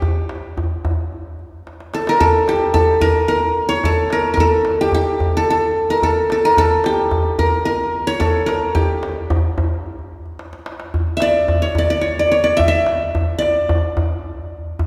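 Steeped in a long concert-hall reverb and heard from further back in the room, this melancholic, longing fragment of an Arabic maqam ensemble piece places a bright-edged, triple-strung qanun played with fingerpicks up front over a large, deep clay-shelled darbuka struck with hard hands, the drum breaking into short fills at 1.7 and 10.4 seconds before the qanun falls silent at 14.4 seconds.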